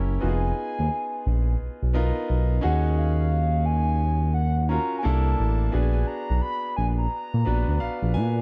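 An unhurried, swung sixteenth-note groove in 4/4 carries this introspective, sultry neo-soul R&B excerpt, where a smooth, up-front synth bass with a dark, sustained ring-modulated tone anchors chords moving from Fm7b5 through Ebm11 to C13 and Bb7b9b13. A clear grand piano with long, natural sustain plays accompaniment and adds a fill from 7.4 to 8.4 seconds, while a soft, hollow, woody clarinet-like synth lead, colored by chorus and phaser with a mellow vibrato, carries the melody high above. Studio reverb lends the dark production its warm glow.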